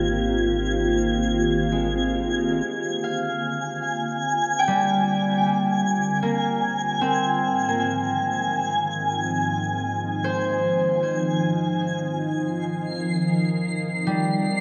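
A glassy FM pad sits up front in this serene ambient fragment, its ethereal, full-bodied chords sustained with a slow attack, long release, ensemble chorus and built-in reverb. A ringing concert harp plays bright arpeggios through delay in 3/4. High above, a twinkling granular texture adds a sparkling octave-up shimmer. A round, deep analog bass anchors only the opening and stops at 2.6 s. From 2.7 s the pad fades in as the harmony moves from Fm9/Ab to Bb9, back to Fm9/Ab, and on to a rootless Abmaj9, all within a dreamy mix soaked in huge reverb.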